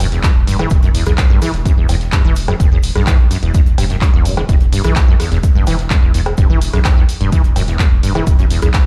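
This driving, trippy acid house cut sounds as if it is played on a big sound system in a bare room, with light reverb and a large studio reverb around it. A squelchy, resonant sawtooth acid bass carries the riff with a filter sweep, tube saturation, ensemble chorus, digital delay and sidechain pumping. Beneath it, a deep, thick sine sub bass is saturated and sustained, and it also pumps with the sidechain. A punchy analog kick drum arrives at 0.2 s and sits in front. An analog drum machine adds cowbell, handclaps, hi-hat and rim click, both re-recorded in a small room. In the background, a dry, tight acoustic funk kit with a high-tuned snare, hi-hat and shaker plays through high-pass filtering and pumping on its hats and percussion, all over an E5 chord.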